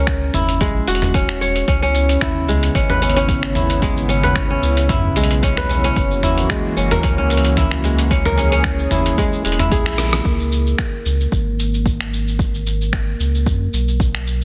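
Crisp, ringing kora arpeggios open this earthy, swung organic downtempo excerpt over a round, deep sub bass that pumps to the sidechain, soon joined by a gritty, tape-warm sampler-style kit of finger snaps, hi-hat, rim clicks, shaker and toms sitting up front beside an overdriven electronic kick. At 1.7 seconds a soft, detuned analog pad enters with warbling, lush chorus, sustaining chords beneath the kora until a band accent and drum fill around 10.0 seconds. The pad then gives way to a meditative bronze singing bowl, and the kora rings on briefly before fading, leaving the bowl's metallic tone slowly beating over the bass and drums in light reverb.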